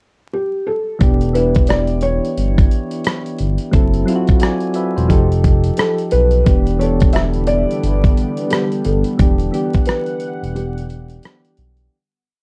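Reflective and nostalgic, this short lo-fi hip hop piece moves at a swung 88 BPM in E dorian, opening with a felt-muted upright piano whose motif-based call phrases carry an intimate, vintage tone with thick felt and audible action noise. From 1.0 seconds, soft electric-piano-like synth keys push spread chords with grace notes and short fills through chorus, tremolo and cassette tape coloring, over a sparse, smooth synth bass and a gritty sampler-style drum kit with a thumpy kick, laying down a laid-back beat with sixteenth-note hats. A lush, detuned unison pad enters at 7.3 seconds with slow-attack sustained chords, while the dark production, vinyl crackle and light reverb carry everything into a fade-out and closing break.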